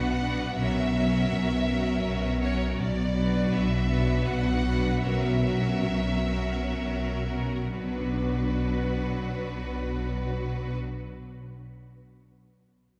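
Bathed in a wet church reverb with a 3.4-second tail, this elegiac, yearning slow romantic movement for symphony orchestra unfolds in B minor and 3/4 at a rubato 58-83 BPM, slowing between 1.7 and 7.8 seconds as it rocks between B minor and F#7 over B. A warm violin section carries the expressive melody with vibrato and portamento, while a second, clear and distant violin section adds an intense inner line, and rich violas supply focused accompaniment with a smooth top. A clear double bass section, placed up front, and an even cello section hold a low B, and a ringing, fingerpicked concert harp spins arpeggios in the background, sounding on alone after the strings stop at 10.8 seconds until 11.7 seconds.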